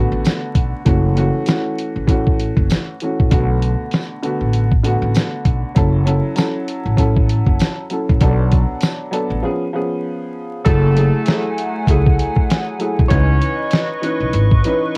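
A swung boom-bap groove at 98 BPM rides a gritty, compressed sampler-style kit with a thumpy kick and fat snare up front, a growly pizzicato upright bass, and a jingly tambourine tucked in the background, while a worn, slightly detuned upright piano comps on minor seventh chords in F# minor under cassette tape coloring and vinyl crackle. After a break at 9.4 seconds, the harmony turns dorian at 10.7 seconds, where a mellow jazz saxophone section adds smooth stabs with tape echo. An airy, flute-like pad with chorus drifts in at 11.1 seconds, giving this dry, reflective home-recorded fragment a hollow glow.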